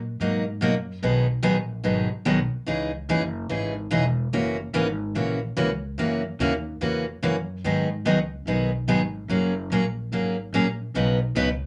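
A swinging, cheerful western swing excerpt in a loping 4/4 with a relaxed shuffle, cut from a longer country piece. A bright, full-bodied picked steel-string acoustic guitar sits up front, finger squeaks audible, picking through chords that move from Bmaj7 through G#m7 and F#7 before settling on Badd9. Beneath it a woody, thumpy pizzicato upright bass with gut strings anchors the low end, all set in a small, reverberant room.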